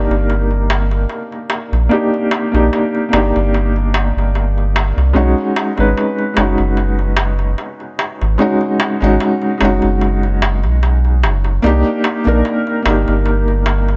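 Trip hop at 74 BPM in 4/4, this melancholic, smoky excerpt from a longer piece moves with a light sixteenth-note swing. A felt-muted upright piano carries the accompaniment throughout, its thin-felt, muted tone sitting up front and colored by tremolo, a low-pass filter and tape echo, with chords moving from a rootless Cm7 to B6 at 5.2 seconds and back to the rootless Cm7 at 11.6 seconds. Beneath it, a soft dub sub bass holds the low end from F#1 to C2, round and mellow with a fast attack and sustained notes, its triangle and square wave tone thickened by tube saturation. A darbuka enters at 0.1 seconds, its metal shell sounding crisp and deep, compressed and saturated, and quieter than the other parts. A small room reverb surrounds the sound, and the top end stays dark, with nothing above 8.0 kHz.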